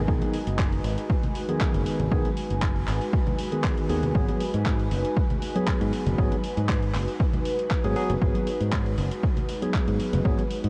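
A punchy, overdriven electronic kick sits up front at 118 BPM with a light 16th-note swing, driving this short, hypnotic deep house cut in G# minor, where tape-warm handclaps and hi-hat and very quiet ringing congas and bongos join a round, dark fingered electric bass that pumps beneath bright tine electric piano stabs on a G#m7 chord given a filter sweep, analog delay and a low-pass filter, while an airy, breathy pad sits in the background beside a moody, wave-folded ambient pad with chorus in a dreamy, reverb-soaked mix with a cassette tape sheen.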